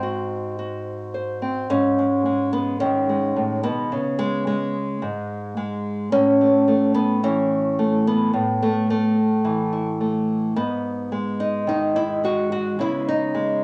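A bright, fingerpicked nylon-string guitar with fresh strings sits small and up front in this melancholic, intimate folk excerpt at 108 BPM in a straight 4/4, opening on G#7 before settling at 1.7 seconds into a G#m, C#5 and Aadd9 progression, all captured as a home cassette recording with light small-room reverb.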